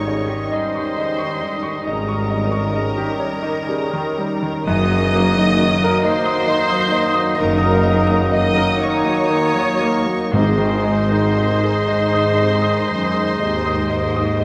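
A passionate, lush romantic movement for piano and orchestra opens at once in a slow, rubato 12/8, the clear, slightly worn grand piano carrying the melody alongside a veiled con sordino studio violin section, while a soft-mallet timpani stroke sounds at the very start and returns from 10.3 to 11.8 seconds. Second lines come from a smooth oboe solo, a pure flute section with vibrato, a distant, very quiet clarinet and a dark, muted chamber violin section, over accompaniment from a punchy bassoon and a hushed chamber viola section. Quiet sustained chords from a bright trombone section and a vintage-toned French horn section sit over a bass of tuba, a distant chamber cello section and a rich symphonic double bass section, all bathed in a stone room reverb as the harmony moves from Eb7/Ab through Ebm/Gb to Ab in this excerpt.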